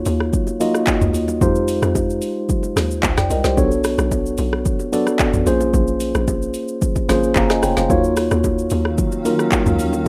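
A mellow, up-front tine electric piano and a hollow, bouncy log drum bass open this soulful, hypnotic amapiano excerpt at 111 BPM in Eb dorian. They are joined by a deep-kicked electronic drum kit with woody snare, dark hats, handclaps, rim clicks, shaker and toms, and by very quiet, close and dry congas and bongos. Finally, a blurred granular cloud pad with its own reverb drifts in at 8.8 seconds, while minor-ninth chords move from Ebm9 through Fm9, Bm9 and Bbm9 and back to Ebm9, all in a rough home demo mix.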